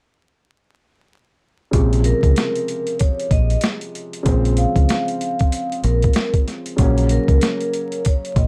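A swung 16th-note boom-bap groove at 95 BPM in 4/4 drives this reflective, dark hip hop excerpt in Bb minor, cut from a longer piece. At 1.7 s the sampler-style drum kit arrives up front, compressed and pitched down, with an overdriven edge, a thumpy kick, a high-tuned snare and hi-hat. A deep, round fingered electric bass, direct and amped, sits equally forward in its low register, while a mellow, boxy concert grand piano plays filtered accompaniment beneath. From 2.1 s a vibraphone carries the melody with medium mallets, its metallic, ringing tone shaped by a slow motor vibrato and filtering. The harmony rests on Bbm7 before shifting to Gb/Bb at 6.8 s, all captured as a dry, gritty hardware recording with little reverb and a bed of vinyl crackle.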